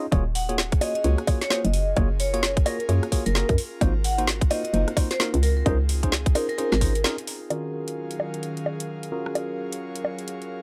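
Late-night and soulful, this two-step UK garage excerpt swings at 130 BPM in Eb dorian, with a clean electric piano through a combo amp stabbing Ebm11, Gbmaj9, Ab13 and Dbmaj9 chords through a low-pass filter and tape echo, while a soft, breathy pad with chorus and sidechain pumping sustains beneath. A hollow, bouncy FM bass and a tight, up-front electronic kick drive the groove alongside a garage kit of bongos, metallic hi-hats, rim clicks and a woody snare, and a bright, ringing vibraphone with medium motor vibrato carries the melody from 0.4 seconds. The whole band hits an accent at 7.0 seconds as the bass, kick and vibraphone drop out for a short break, after which the keys, pad and kit carry on in a dry, gritty hardware sound.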